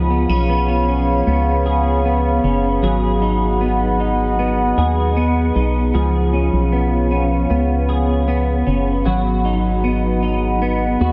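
A hollow, organ-like FM bass sits up front, dark and percussive, while a clean, compressed electric guitar plays fingered arpeggios through chorus and digital delay and a warbling, lo-fi tape-like pad holds detuned, nostalgic chords in this haunting, melancholic dream pop piece at 77 BPM in G# dorian, tuned to A4 = 438 Hz, cycling between C#7 and G#m7 and bathed in a huge ambient reverb.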